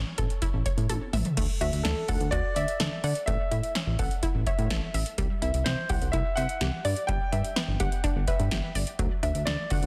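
A straight 4/4 pulse at 126 BPM drives this nostalgic, upbeat synth-pop excerpt in D major, moving through A, D, C and G. An electronic analog drum machine sits up front with a deep kick, punchy snare, metallic hats, crash and toms; it has a tape-saturated character and the sound of being re-recorded in a small room, and it plays a fill at 0.9 s. Underneath, a chorused synth bass is glossy and dark, blending detuned pulse, sawtooth and sine waves with a plucky filter, and it also sits prominently in the mix. A lush, bright unison pluck spins vintage-flavoured arpeggios with a warbling, detuned edge and tape echo, while a present, polished baby grand piano carries the melody, also through tape echo. At 1.6 s a lo-fi, dusty second line joins high in the register, its detuned square and sawtooth tones wobbling through chorus and echo under an evolving filter sweep. Light reverb and digital ambience surround the parts, and the master is dense and heavily limited in a modern style.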